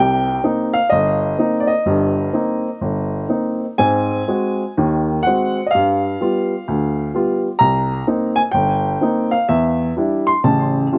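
Dry and close, as if captured in open air, this cool, moody solo jazz passage in C minor at 127 BPM sets a woody, polished upright piano up front with a touch of slapback echo, its swung, rubato phrasing moving through Cm7, Ab7 and G7 before turning to Em7 and A near the close of this 11-second cut from a longer piece.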